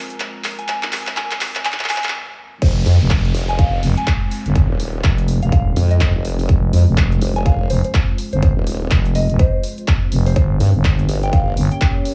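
A thick, growling FM bass, pumping against a punchy, up-front electronic kick, slams in at the drop at 2.6 seconds in this swaggering, aggressive bass house excerpt at 124 BPM in F minor, joined a moment later by a sawtooth formant-sweep wobble bass that pumps as well, after a build-up with a drum fill from a big-room dance kit of crash, handclaps and hi-hat, while a pure, mellow synth bell carries the melody through phaser and tape echo, a moody ambient pad holds chords in the background, and a faint downlifter sits beneath the opening of the drop.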